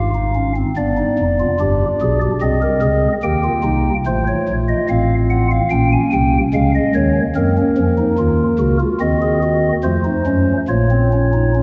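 A wet church reverb with a long 3.0-second decay surrounds a single chamber organ, its stopped flute voicing sitting up front with a hollow, mellow tone and a soft chiff at the start of each note. This solemn yet driving baroque-style four-part fugue, a brief fragment of a longer piece, moves in a straight 4/4 and spans from deep bass notes up into the high treble. Its minor-key harmonies, including a diminished chord near the close, resolve back to the home chord at 10.7 seconds.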